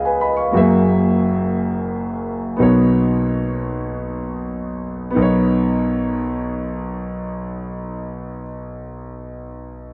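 A warm concert grand piano, deep in the bass, boxy and up front with long sustain, carries this uplifting, hopeful gospel fragment in a slow 6/8, slowing down from 0.5 to 5.2 seconds as extended chords settle onto a Bmaj9 at 2.6 seconds, all within a moderate studio reverb that suggests a band playing live in one room.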